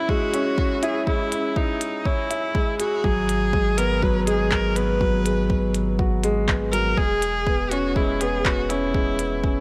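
A dark, woody upright piano with long sustain and tape echo carries the riff up front in this moving, melancholic piano-and-strings electronica excerpt in G# minor at 122 BPM, alongside a rich, smooth solo viola singing the bowed melody with vibrato. An overdriven, deep electronic kick and a minimal click kit of handclaps and clicky hi-hats drive a short build-up over C#m, and at 3.0 s the drop arrives as a round, sine-like sub bass enters with sidechain pumping. The harmony moves through G#m7 and then E6 at 7.0 s, all set in a light reverb with small-room ambience.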